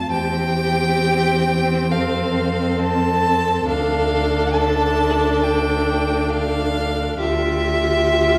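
Rubato phrasing stretches a slow 4/4 pulse at 68 BPM in this tender, serene fragment of a romantic classical movement for string quartet, its harmony moving from C/E through F and Dm to G5/D. An up-front first violin carries the melody with expressive vibrato and portamento, and a second violin sings a lower line beneath it with the same sliding, vibrant warmth. A distant viola adds a soft-attacked, rich accompaniment, an up-front cello holds a smooth, even bass, and a wet concert-hall reverb gives the quartet a long, glowing tail.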